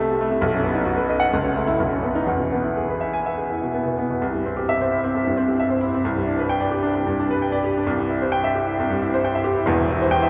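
Sparkling and heroic, this short classical fragment is a virtuoso piano study, cut from a longer piece and played with a free, rubato feel in common time. A clear grand piano plays alone from start to finish, its tone present and up front, ranging from the deep bass up into the upper register. The opening passage moves through B, A over C sharp and E, and then at 4.2 seconds the music turns to a fresh tonal centre, settling on C, G over C, and C over E. A long, wet cathedral reverb surrounds the instrument, giving the sound the spacious bloom of a church or concert hall, while the top end stays softly rounded. The result feels both brilliant and grand, a display piece caught mid-flight.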